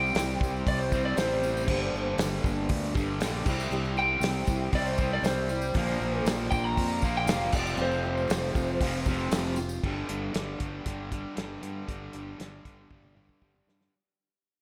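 Brooding and swaggering, this classic rock cut from a longer piece moves at 118 BPM in a straight 4/4, set in G dorian over chords such as C, Gmadd9, Bb6 and Fadd9. A lightly driven lead guitar, slightly broken-up and compressed with a slapback echo, carries the melody as a solo until 8.8 seconds, while a woody jumbo steel-string acoustic with old strings picks along in the background through the same echo. Up front, a bright, double-tracked distorted electric guitar hammers out the riff, anchored by a growling, overdriven fingered bass. A damped 70s drum kit with dark cymbals, a tight kick and a rolled-off top keeps the groove, joined by a jingly, distant tambourine that drops away at 9.8 seconds as the fade-out begins on a G5 chord. A drum fill at 12.9 seconds closes the passage, all set in a lush hall reverb that lends a big arena sound.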